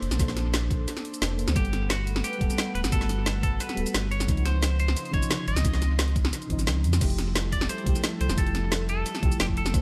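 Liquid drum and bass with a dreamy, warm mood, where a round FM electric piano with chorus and tape echo and an airy, breathy pad pumping in the background sit over a deep sine sub bass and overdriven kit with a woody snare and bright hats, joined by a gritty, thumpy electronic kick at 0.2 seconds and a clean, picked electric guitar melody with 12-bit sampler grit and tape echo at 1.6 seconds, all in an echo-heavy mix gliding through lush major-ninth chords.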